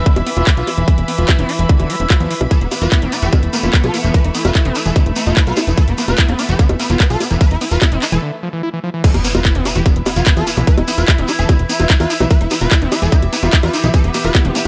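A tight, up-front electronic kick drives this hypnotic, psychedelic trance excerpt at 147 BPM in E phrygian, alongside a punchy, funky analog bass pluck, a squelchy, distorted acid riff, a drone of moving overtones, smooth bowed strings and a drum kit of bongos, handclaps, crash and metallic hats, while an aggressive, swarming detuned rave lead and a grainy, distant shekere enter at 2.5 s, and after a short break at 8.2 s the drop lands at 9.0 s with a background impact.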